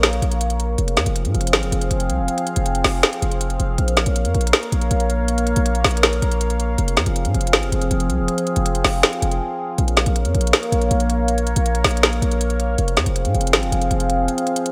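From the first moment, a resonant pad of detuned sawtooth and triangle tones holds sustained chords alongside a punchy 808-style bass and a trap drum kit, setting a melancholic, eerie hip hop mood in a half-time feel. The pad is evolving and wave-folded, with a slow attack, long release and a filter swell, and its chorus and phaser give it a sweeping, uneasy shimmer. Underneath, the heavy sine bass carries a noise layer, with a fast attack and decaying tail, while the electronic kit pairs a woody snare with crisp hats, all three sitting up front in a dry, close mix. The harmony moves between just two minor chords. A brief break arrives at 9.4 seconds, and at 14.3 seconds the bass stops and the kick drops out, leaving pad, snare and hats to close this cut from a longer piece.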